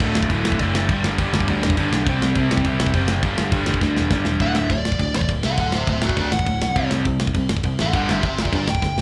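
Punk rock at 204 BPM in D mixolydian, rowdy and upbeat, heard live through a club PA: a crunchy, double-tracked overdriven rhythm guitar riffs over growly picked bass and a tight metal kit with bright cymbals, and after a drum fill a smooth overdriven lead guitar takes a solo from 4.4 seconds to the end of this cut from a longer piece.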